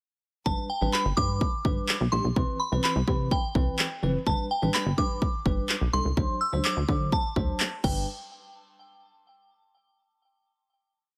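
A glassy FM synth bell carries a crystalline, hook-based melody through chorus, tremolo and tape echo over syncopated drop2 chords from a bell-like tine electric piano, a punchy, wave-folded analog bass line with chromatic approach notes, and a layered, overdriven pop drum kit of kick, handclaps and crash, with the bass and electric piano pumping under sidechain in this euphoric, upbeat dance-pop piece that closes on a final hit at 8.1 seconds.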